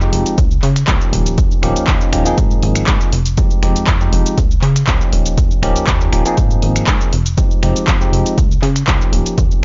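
A straight groove drives this short, sensual slice of filtered disco house, with a punchy electronic kick arriving at 0.4 seconds and sitting highest among the parts. Around it, an analog drum machine lays down finger snaps, handclaps, hi-hat and shaker, both kit sounds carrying the air of a large room they were re-recorded in. A plucky, funky analog bass built from sawtooth, square and triangle waves, wave-folded and given a fast-attack filter pluck that decays, pumps through sidechain compression. Above it, a bell-like tine electric piano, clean and direct, voices a looping progression of Dbadd9, Eb9, Ab69 and Fm7, colored by a phaser and the same sidechain pumping. The whole piece has a dry, gritty hardware character with transformer saturation, and its top end is cut off above 7.5 kHz, giving it a muffled, filtered glow beneath the digital ambience.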